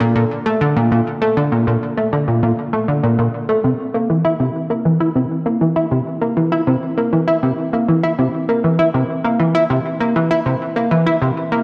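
A dreamy mix soaked in wet plate reverb, with a long 2.5-second tail, gives this ambient piece a luminous, cosmic glow. A single plucky analog bass carries the whole clip on its own, playing for the full 11.6 seconds in straight 4/4 time. Its tone is punchy and funky, built from sawtooth and square waves with a ring-modulated edge and a filtered pluck. Each note strikes with a fast attack and then decays, sitting up front and colored by a subtle chorus and delay. The part ranges from Bb2 to E4, tuned to A4 = 439 Hz, in this short excerpt cut from a longer piece.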